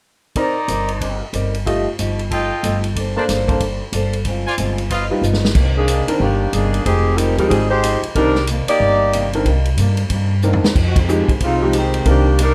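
A mellow, tightly voiced saxophone section with light vibrato takes the melody from 5.8 s, up front in this brassy, dramatic excerpt of big band swing in C minor at 185 BPM, after bright trumpet stabs carry the opening until 5.0 s. Beneath them, a brilliant upright piano with audible action noise and long sustain comps alongside a boxy, picked ladder-braced acoustic guitar in the background, while a woody, thumpy pizzicato upright bass sits up front. A natural-sounding vintage drum kit with a punchy kick plays a fill into the second section and another leading into a band accent at 10.9 s, all in light reverb.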